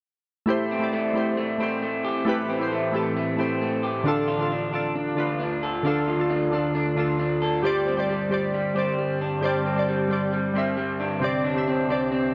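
A twangy, slightly broken-up electric guitar through a small old amp picks arpeggios up front from 0.5 seconds, treated with lush chorus, tape echo and a low-pass filter, while airy digital keys with chorus and filtering play accompaniment alongside it. A dark, ethereal FM pad with ensemble chorus enters at 1.1 seconds to hold sustained chords over an Am7, Dm, Gsus4, Csus2 progression in A minor. This melancholic, brooding hip hop passage moves at 134 BPM in a half-time feel, cut from a longer piece and set in a lush hall reverb on worn, warbling cassette tape.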